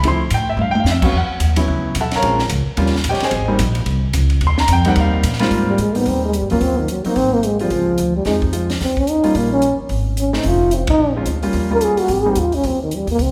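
A lush recital-hall reverb surrounds this short clip of small-group swing and bop, heard as if in a church or concert hall. The mood is relaxed and sophisticated, riding a brisk swung 4/4 pulse. An intimate grand piano, up front with audible action noise, accompanies through the chord changes, while a woody, thumpy upright bass, played pizzicato on gut strings, holds the low end. A compact cocktail drum kit sounds dry and acoustic, with dark cymbals, a high-tuned snare and a punchy kick, and it adds a fill near the start. At 5.7 seconds a close-miked trombone takes the melody as a solo, dusky and up front with light vibrato; the band hits an accent at 10.9 seconds, and the piano drops out at 12.4 seconds.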